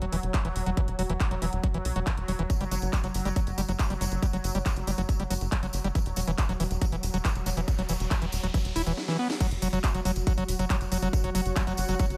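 Psychedelic trance with a hypnotic, intense drive, this 12-second fragment of a longer track pairs an up-front tight kick and dark, punchy sawtooth sequencer bass with a squelchy, distorted acid riff, a bubbling detuned filter texture, a cracking overdriven snare among the techno kit's claps, hats and crash, and a jingly tambourine from 2.5 seconds, as a background riser and drum fill lead into a drop at 9.4 seconds, after which a cloudy granular pad drifts in at 10.1 seconds.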